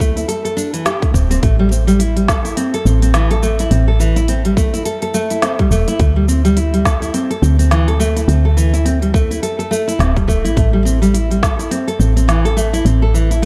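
From the first moment, a dark, full-bodied nylon-string guitar plays fingerpicked arpeggios with audible finger squeak and tape echo over a soft, round FM bass that pumps under sidechain, while a tight electronic kick, which drops out at 11.6 seconds, and a quieter kit of woody snare, crisp hi-hats and shaker carry this meditative, swung organic downtempo excerpt through D5 and Am7 chords in a dry, warm production.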